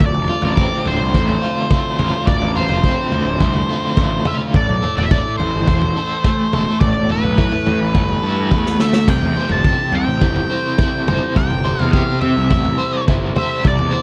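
A dry, close recording with a 1970s studio character frames this trippy, mysterious psychedelic rock excerpt, which moves through Dm7, Asus2 and C6. A bright, double-tracked overdriven guitar sits up front with a crunchy tremolo riff over a punchy vintage acoustic kit with dark cymbals and a rolled-off top; the kit plays a fill from 8.5 to 9.1 seconds, while a fuzzed, overdriven picked bass stays in the background. A dark octave-fuzz lead guitar carries the melody through wah and slapback echo, and a reedy combo organ with heavy vibrato holds very quiet sustained chords underneath.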